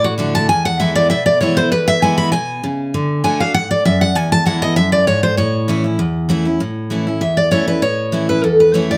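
Joyful and driving, this short bluegrass piece, cut from a longer performance, races along at 196 BPM in a straight 4/4 in A major. Two picked steel-string acoustic guitars play throughout the 9 seconds: one carries the melody in the upper register, from F#4 to B5, while the other supplies accompaniment lower down, from E2 to F#4. The lead guitar has the crisp sparkle of fresh strings, and both share a bright, full-bodied dreadnought tone, placed up front with the melody sitting a touch louder. A steel-string guitar solo fills the opening 6.6 seconds over chords moving from E to D, back to E and home to A, before a new section takes over at 6.6 seconds. Moderate studio reverb gives the pair a sense of room.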